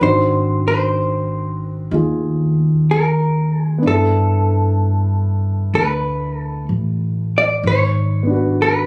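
Captured on a phone in a dry studio room, this short excerpt of a melancholic, wistful jazz ballad moves at a slow 63 BPM with a swung feel. A dark, clean, compressed hollow-body electric guitar carries the melody up front, picked over a grand piano whose intimate, natural tone includes audible action noise. A woody pizzicato upright bass on steel strings sits close and prominent beneath, while the harmony drifts from G#7#11 to G69 and then G#m7b5.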